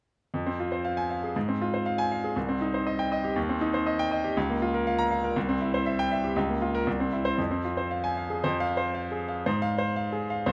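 A clear, natural grand piano plays alone and up front from 0.3 to 10.5 s in this passionate, agitated classical virtuoso study in F minor, set in 2/4 at 119 BPM with a rubato feel and tuned to A4 = 444 Hz. Spanning C2 to Bb5, the harmony moves from F minor through C minor and B-flat minor to C major before settling back on F minor, with the opening phrase returning at 8.4 s. Close, detailed microphones capture the instrument within a moderate recital-hall reverb, and the passage is cut from a longer piece.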